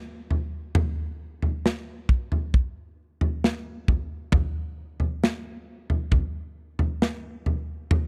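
After a brief pause, a modern studio drum kit enters at 0.3 s and carries this short pop fragment, cut from a longer piece, through to its close at 8.1 s. The tempo is a slow 67 BPM in a straight 4/4, and the mood feels hopeful and tender. The acoustic kit's kick, medium-tuned snare and toms sit up front, with a punchy low end and an airy, polished studio-room character. The recording is dry and close in a 1970s studio manner, carrying little reverb. The whole passage stays within a single section, giving a steady, intimate frame for the drums.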